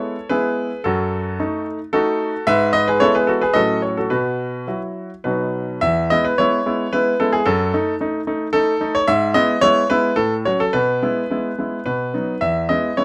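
A clear concert grand piano carries this elegant, graceful classical-period sonatina alone, spanning E2 to E5 in E major at 109 BPM in 3/4 with a rubato feel. Close, detailed microphones put the instrument up front and intimate, so the deep bass and the audible action noise come through alongside its polished tone, all in a dry room with little reverb. The opening phrase moves from E through a diminished chord over F# and E over G# to F# minor over A, then reaches a suspended B before resolving to B at 5.3 seconds. A second phrase begins at 5.8 seconds, retracing much of the same path but turning through E over B and B before settling back on E at 12.4 seconds. Cut from a longer piece, this short passage is tuned slightly bright, with A4 at 443 Hz.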